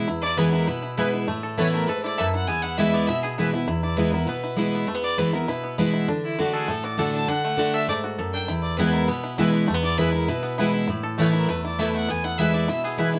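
Lively and rustic, this 200 BPM bluegrass piece in E mixolydian sets a biting, nasal fiddle melody beside a twangy, fingerpicked banjo line over a full-bodied, up-front picked steel-string guitar, while a woody mandolin adds stabs from 0.4 to 3.5 seconds and again from 8.8 seconds, the band heard playing live together in one room with moderate studio reverb.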